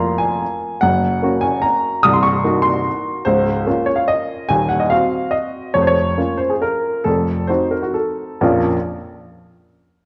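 Heard through worn, warbling old cassette tape with a drifting pitch and a moderate scoring-stage reverb, this wistful, nostalgic fragment of a classical piano waltz in Bb minor sways in a rubato 3/4 between 119 and 154 BPM. A solo upright piano, intimate, woody and slightly detuned, with short sustain and audible action noise, sits up front and spans C1 to Eb6 from 0.0 to 8.8 s. Its harmony passes through Gb, Cm7b5 and a tense F7b9 before coming to rest on Bbm at 8.4 s.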